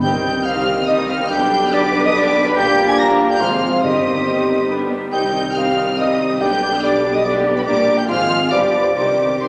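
A wet recital-hall reverb surrounds this restless, dramatic passage of classical orchestral music in C minor, cut from a longer piece and moving in 3/4 at 141 BPM. A lush, bowed violin section carries the melody high above the orchestra with focused vibrato and a smooth top, while a second, very quiet violin line runs beneath it alongside a hollow, pure concert flute, a dark, roomy clarinet and a mellow cor anglais. An intense viola section and a dark bassoon fill the accompaniment, and a French horn section and a vintage-toned trombone section hold sustained chords. The bass is shared by a distant, clear double bass section, a mellow tuba and a close, even cello section that enters at 0.5 seconds. The harmony circles from C minor through G over B, G minor over Bb and F minor over Ab before a G7 turns it home to C minor, and round, calf-headed timpani struck with soft mallets sound briefly near 3.8 seconds and add a brief fill from 8.9 seconds.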